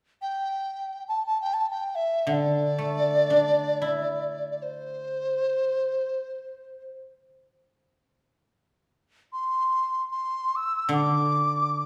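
Pastoral and graceful, this brief excerpt of Chinese traditional chamber music unfolds in free time, led by a mellow large dizi whose bamboo tone carries an airy, buzzing membrane, vibrato and soft attacks as it sings its expressive melody from 0.2 seconds onward. A guzheng, played with fingerpicks, adds silvery, ringing accompaniment in its lower register, entering at 2.3 seconds and returning near the close at 10.9 seconds. Both instruments sit up front, though the listener seems placed further back in a recital hall whose lush reverb surrounds the ensemble.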